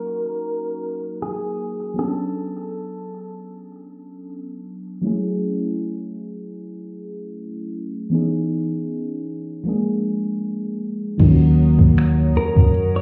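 A clean, direct-recorded electric guitar with digital delay picks out a short, longing melody over a round, dark FM electric piano coloured by chorus and phaser. This slow, sensual contemporary R&B piece moves at 78 BPM in Eb phrygian, drifting through minor ninth chords toward Bb7, and the whole mix sounds muffled, as if heard through a wall into a stone room, while a filter sweep runs until 11.2 seconds. At 11.2 seconds a rubbery, bouncy square-wave bass and a produced drum kit arrive up front, the kit bringing a soft kick, metallic hi-hat, finger snaps and crash, joined by a faint sawtooth pad with chorus and sidechain pumping, and the guitar returns briefly at 12.4 seconds.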